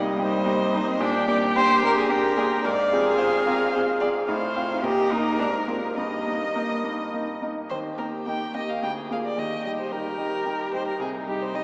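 A quick, cheerful classical-period movement for piano quartet in 3/4, cut from a longer piece, with a graceful air. A focused, up-front violin carries the melody with vibrato from 0.2 seconds, while a rich, smooth cello sings a second line. A clear baby grand piano, intimate with audible action noise and long sustain, and a clear bowed viola fill in the accompaniment. Everything sits in a very wet cathedral-like reverberation with a five-second tail, heard through a small-speaker sound, and the phrase restarts at 7.7 seconds.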